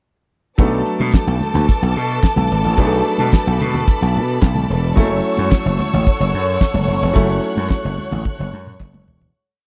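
Danceable and sultry, this short disco groove in B minor runs at 110 BPM in 4/4, moving from Bm7 to F#m7 at 5.0 seconds in a dry, close 1970s-style studio sound. A damped acoustic drum kit sits up front with a four-on-the-floor beat, fat snare and sixteenth-note hats, alongside a gritty, overdriven slap bass playing a punchy syncopated line, while soft-handed congas and crisp group handclaps on the backbeat sit in the background. A clear, worn grand piano holds drop2 chords with grace notes, a focused studio string section plays long high lines with vibrato, and a lush symphonic string section adds a soft-attack sustained pad before the music fades out from 7.2 seconds under a closing drum fill.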